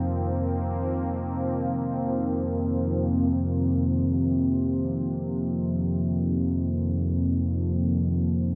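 A bright, detuned sawtooth pad sweeps through sustained chords over a warbling, vintage analog drone, whose filter sweep colours the opening 3.3 seconds, as this ominous, vast dark ambient fragment sinks both chorus-thickened parts into an enormous, dark reverb.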